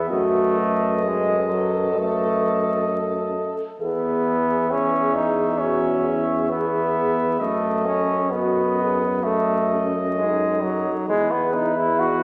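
A brilliant, vintage-toned trombone sits up front in this tender, lyrical hymn-like passage for brass band, carrying the accompaniment while a warm cornet sings the melody and a French horn section adds a second line with light vibrato from the background. A mellow, very quiet euphonium with soft attack and vibrato joins at 0.1 seconds, and a clear, vintage tuba with a soft attack anchors the bass with its own vibrato, all moving in a rubato 4/4 between B7/F# and E chords. The brass blooms in the wet reverb of a scoring stage, with vinyl crackle underneath, in a brief cut from a longer piece.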